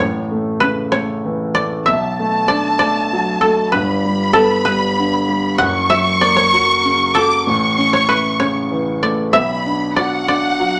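Dramatic and aching, this brief pop fragment in a straight 6/8 sets a dry, woody koto, played with fingerpicks, up front on the melody over a concert grand piano whose deep bass anchors the accompaniment. At 1.9 s a lush symphonic violin section joins with a high second line, its bowed, vibrato-rich tone soft in attack and smooth on top. The whole piece sits in a studio reverb, moving through a chord progression that starts on A and settles on Bm.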